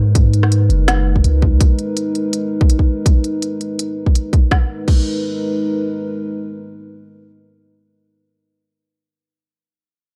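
Half-time drum and bass at 165 BPM in G# minor, this dark, spacious excerpt opens on a G#madd9 chord, with a moody, nasal analog pad holding sustained chords under chorus and sidechain pumping until 8.2 seconds. A deep, sine-toned 808-style bass sits up front with a fast attack and mellow decay, but it drops out at 1.6 seconds. From 0.2 to 5.0 seconds, a hard-clipped, tape-warm electronic kick leads the drums, backed by a lighter kit of woody snare, smooth hi-hats, rim clicks and crash cymbal, all set in light reverb and digital ambience.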